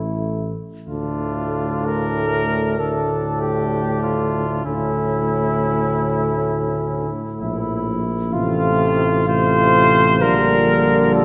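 Heard through the wet reverb of a scoring stage, this noble, warm excerpt from a classical brass quintet moves at a rubato 65 BPM in D minor, where a mellow, lightly vibrato trumpet carries the melody up front from 0.9 s over a distant second line from the flugelhorn, a bright trombone, a soft-attacked French horn set in the background, and a smooth-topped tuba bass that sits forward in the mix.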